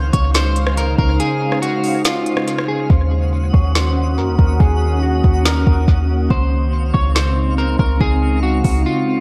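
A deep, boomy 808-style bass sits up front in this dreamy, floating cloud-rap excerpt in Db major at 141 BPM with a half-time feel, beneath a slightly broken-up electric guitar melody with tape echo, a glassy, sidechain-pumped FM pad with ensemble chorus, a faint twinkling granular shimmer, and a smooth R&B kit with a woody snare whose kick drops out from 1.2 to 2.9 seconds, before a filter sweep from 2.9 seconds accompanies the move from Dbmaj7 to Ebm7 and back in an echo-heavy mix.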